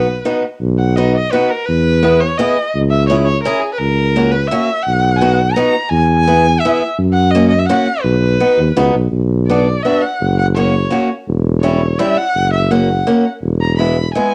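Opening together, a clear, focused bowed erhu carries the melody with vibrato and portamento, a woody, boxy picked acoustic guitar on old strings picks out the accompaniment, and a dark, punchy tuba with tube saturation holds the bass in this festive, jolly alpine dance-band tune at 168 BPM in 3/4, which moves from B major into B harmonic minor at 9.1 s and has the character of a home cassette recording in a moderate studio reverb, cut from a longer piece.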